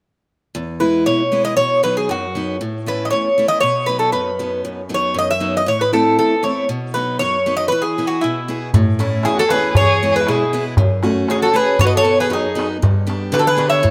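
Greek folk music for a bouzouki band, uplifting and joyful, moving at 117 BPM in a straight 2/4 in E major, heard here as a short cut from a longer piece. A picked steel-string acoustic guitar sets up the accompaniment from 0.5 seconds, its fresh strings bright and up front with the odd finger squeak, and the Greek bouzouki takes the melody just after, bright and metallic from its doubled strings, some of them in octaves. The harmony travels through E, B and A, colored by a borrowed A minor, before the second section opens at 8.7 seconds, where a metal-shelled darbuka joins with crisp, soft-handed strokes in a small-room sound. At 9.2 seconds a single bowed violin adds a second line, dark and nasal with vibrato, portamento and a boxy tone, carried by tape echo. That closing stretch passes through F# minor and B before landing on a surprising G, all set in light reverb.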